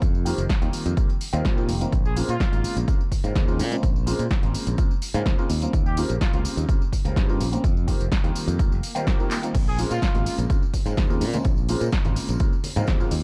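A straight 4/4 groove at 126 BPM drives this funky, sensual slice of filtered disco house in Bb dorian, cut from a longer piece. An up-front electronic kick anchors a punchy analog drum machine with crash, handclaps, hi-hat, snare and tambourine, whose hats, percussion and cymbals pump under sidechain, the machine's snare, clap and hats carrying a short room. A growly, bright fingered electric bass, direct and up front, pumps along between F1 and Bb2, while a boxy grand piano with audible action noise plays the chords through phaser and 12-bit sampler grit, moving from F7sus4 to Bbm9, Eb13 and back. A mellow, tight trumpet section with light vibrato and a smooth top adds short phrases between F4 and Ab4, first at 2.1 seconds. A background swell and a drum fill at 9.3 seconds lead into soft-handed, band-limited congas and tambourine entering at 9.5 seconds, all within a dark, warm digital ambience.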